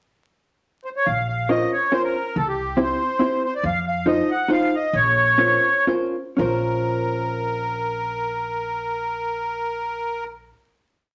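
Whirling and nostalgic, this short musette waltz in 3/4 opens with a pickup bar, during which a reedy, sweet accordion begins a motif-based melody in sentence phrases, its light tremolo tuning and boxy small-room character sitting up front. A dark, clean hollow-body electric jazz guitar, picked and compressed, adds close-voiced backbeat chords from 1.5 s, while a woody, thumpy gut-string upright bass plucks roots and fifths on the main beats under a lightly swung eighth-note feel. The piece slows from 3.6 s into a final chord at 6.4 s, all wrapped in wet studio reverb and a layer of vinyl crackle.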